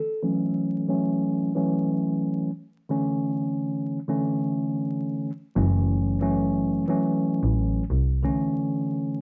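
Dark and moody, this swung boom-bap hip-hop excerpt at 90 BPM in F# minor sets a mellow tine electric piano, given a cassette-tape tint and a filter sweep across its chords, against a soft-attacked bowed double bass that floats in up front from 5.6 to 8.2 seconds, all within a dry, gritty recording dusted with vinyl crackle and light reverb.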